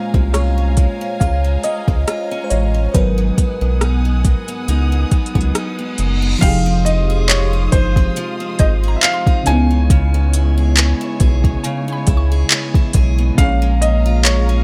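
A longing, moody contemporary R&B passage in F minor at a slow 69 BPM with a light swing opens on a lush, dreamy FM electric piano with a soft pad layer, carrying chorus and phaser, over veiled, muted strings that pump with sidechain, picked arpeggios on a boxy parlour acoustic guitar, a rubbery, bouncy square bass and an up-front, overdriven electronic drum kit with soft kick, crisp hats, handclaps and rim clicks, until a reverse cymbal at 5.7 seconds leads into an intimate grand piano melody at 6.4 seconds, with audible action noise and tape echo, shadowed in the background by a woody, round mallet-like synth pluck, all in a dry, close mix.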